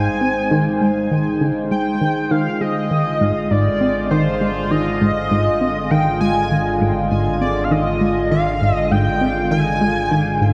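A shimmering, nasal pulse-width lead sits up front, carrying the melody between C5 and Ab5 with vibrato, detuned sawtooth thickness, chorus, delay and a shimmer reverb that give this cosmic, luminous space music its retro glow. Beneath it, a resonant pad sweeps through sustained chords from D3 to C5, its slow attack, filter swell and long release keeping the harmony evolving while it stays bright and close. A punchy, funky analog bass riff moves between Ab2 and C4 at 100 BPM in a straight 4/4, its ring-modulated square and sawtooth tones snapping with a fast filter pluck, then decaying into lush chorus and delay. Far lower and quieter, a fat, thick analog bass holds Ab1 with a detuned sawtooth and a filter sweep, anchoring the music on an Ab chord. The analog synth bass fades in across the whole 10.5-second excerpt, all set in a wet, echo-heavy chamber with a 2.2-second reverb tail.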